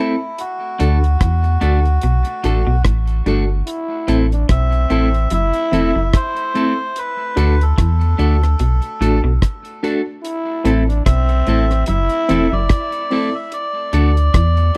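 A laid-back, hypnotic roots reggae groove at 73 BPM in 4/4 with a gentle 16th-note swing in A dorian, where a deep, dry drum kit with a tight kick and a round sine sub bass sit up front beneath a breathy, nasal melodica lead with tape echo, a dark, clean picked guitar, worn and slightly out-of-tune reed electric piano stabs shimmering with fast tremolo, a twangy, slightly broken-up guitar riff with analog chorus in the background, and a raspy, growling trombone second line that enters at 3.7 seconds, all in a close 1970s-style studio sound cut from a longer piece.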